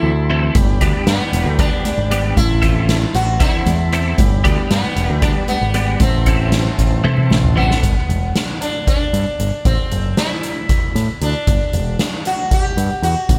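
Opening together at 0.0 s, a buzzing, shimmering sitar melody with dub echo, a bright, twangy twelve-string electric guitar riff through a rotary speaker, reedy combo organ chords with heavy vibrato in the background, and a growling, overdriven picked electric bass set up a dark, mysterious psychedelic rock groove in 7/8 at 231 BPM moving between Am and G, as a soft-mallet drum kit with a boomy kick joins at 0.5 s with very quiet, high-tuned congas just after, and following a drum fill the guitar, organ and congas drop out at 7.8 s, leaving sitar, bass and drums in a dry, echo-heavy mix.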